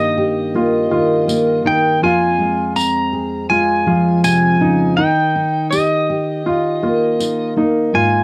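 Nostalgic and gentle, this brief excerpt from a longer acoustic folk piece moves at an unhurried 81 BPM in a straight 4/4. A bright, twangy pedal steel guitar carries the melody up front, its clean, compressed tone shaped by fingerpicks, slide and volume swells. Beneath it, a dark, full-bodied fingerpicked dreadnought sits just as close, providing the accompaniment, while a warm, woody upright piano adds arpeggios in the middle register. A jingly tambourine enters near 1.3 s and drops out at 7.4 s, adding light, close percussion. The harmony moves from Eb/G to Fm and settles on Eb, and the guitar and piano carry the character of a home cassette recording within a moderate studio reverb.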